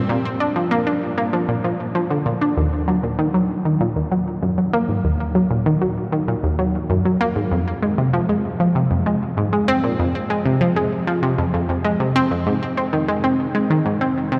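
Cosmic and mysterious, this ambient excerpt at 97 BPM in Eb dorian features a lone analog pluck synth, its round, detuned sawtooth tone snapping in with a fast filtered attack before decaying, bright and up front with chorus and delay. The single part ranges from Eb2 to D4 across the 14.4 seconds, shifting into a new section at 2.6 seconds. A cathedral reverb with a 7.1-second tail places it in a vast, echoing space.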